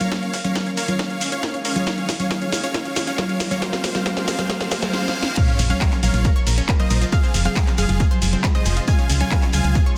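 A huge, detuned supersaw carries the emotional melody of this driving uplifting trance cut at 137 BPM in Bb minor, over pumping, chorused analog pluck arpeggios, a punchy up-front kick, a layered techno kit with cracking snare and metallic hats, and a very quiet grainy shekere, while a faint riser, reverse cymbal and sub drop lead the build-up into the drop at 5.4 s, where a second vintage, warbling pluck line appears and a round, dark FM bass enters at 5.6 s, all within a dense, heavily limited master with light reverb.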